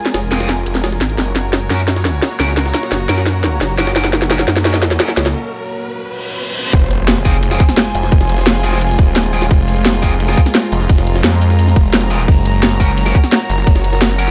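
A straight 4/4 pulse drives this dark, aggressive technical drum and bass cut from a longer piece, where an up-front drum and bass kit with a cracking snare and bright hats sits over a gritty, pitched-up jungle sampler-style kit in the background, a snarling, growling distorted saw bass pumps beneath a deep, moody ambient pad and a distant, smooth symphonic string section, overdriven picked electric guitar stabs carry dub echo, and a very quiet riser and reverse cymbal build through the drum fill and break until an impact and a tight electronic kick land on the drop at 6.7 seconds, all set in a digital ambience.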